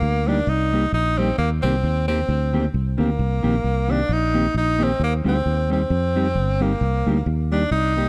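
A bright, punchy tenor saxophone, a mellow electric guitar and a fingered electric bass all sound together from the first moment of this short ska excerpt, which moves at a bouncy, upbeat 133 BPM in 4/4 with a light swing on the eighth notes. Up front and close-miked, the saxophone carries a pop-style solo melody in a narrow register, its vibrato trailed by a tape echo. The clean, fingered guitar supplies accompaniment with a touch of tube saturation, while the round, foam-muted bass sits direct and amped near the front, the loudest of the three parts. The harmony alternates between Cm7 and Eb6 throughout the roughly eight seconds. Light reverb and a dark, warm production keep the sound cozy despite the saxophone's edge.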